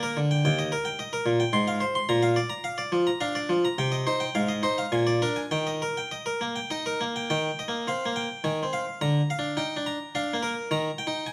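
Flowing and serene, this short baroque-style suite movement for solo harpsichord moves in three-time with a rubato feel, cut from a longer piece. The bright, plucked French-style harpsichord sits up front on a single set of strings, its mid-forward tone caught by close, detailed microphones within a moderate recital-hall reverb. Its lines span low bass to high treble, with the opening section settling home before a second section begins at 7.3 seconds and returns to rest by the close.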